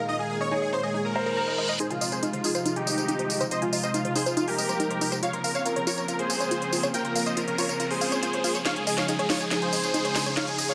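A straight 4/4 pulse at 140 BPM in F minor carries this euphoric, emotional uplifting trance excerpt, where a mellow felt-muted upright piano with tape echo sits in the background until 1.7 s beneath an airy, chorused and phased unison pad, a huge, compressed supersaw lead with vibrato and delay up front, and punchy unison pluck arpeggios with delay. Meanwhile a reverse cymbal leads into a build-up with a riser, in which filter sweeps move across the supersaw and arpeggios, a techno drum kit with a cracking snare, smooth hats, tambourine and toms enters at 1.8 s in a small room, and a drum fill arrives at 8.7 s.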